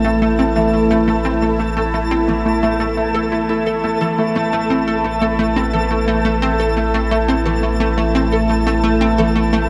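A steady, straight 4/4 pulse at 87 BPM drives this short cut from a longer piece of ambient, sequencer-driven space music, expansive and mysterious, resting on a single A minor chord and tuned slightly sharp to A4 = 445 Hz. A swirling sawtooth pad holds sustained chords through phaser and chorus, while a concert harp ripples ringing arpeggios through tape echo and a hollow, bouncy square-wave pluck repeats a bright, detuned riff with ensemble chorus and echo. Underneath, a round, deep analog bass anchors a low A, and a twinkling granular texture adds sparkling octave-up shimmer on top, all bathed in a huge, wet reverb with a 7.5-second tail.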